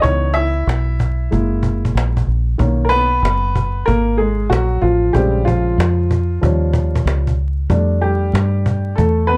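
A dark upright piano leads this cool, smoky jazz-hop excerpt at 94 BPM, taking a mellow, smooth solo, its vintage tone up front with a short sustain. A deep dub fingered electric bass sits just as close, its foam-muted sound round, punchy and dark, while a cajon adds soft hands and faint snares with a woody, band-limited, acoustic character. The 4/4 groove carries a lazy sixteenth-note swing, and all three parts play together for the full 9.4 seconds. The harmony moves from C#m7 through F#7 to Bmaj7, then shifts at 5.1 seconds to Bbm7, Eb9 and finally F69. Light reverb, a dark, warm production and a bed of vinyl crackle give the whole clip a hazy, late-night feel.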